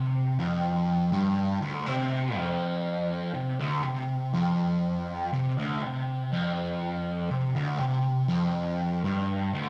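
A double-tracked fuzz guitar plays alone from the start in a short, hazy and trippy rock fragment cut from a longer piece, its picked, distorted notes sitting low in the register and placed up front. Phaser colours the thick fuzz tone, and the part shifts into a new section at 1.6 seconds and carries on to 9.7 seconds. A damp stone-room reverb surrounds it, giving the rough rehearsal-room sound a cavernous, murky air.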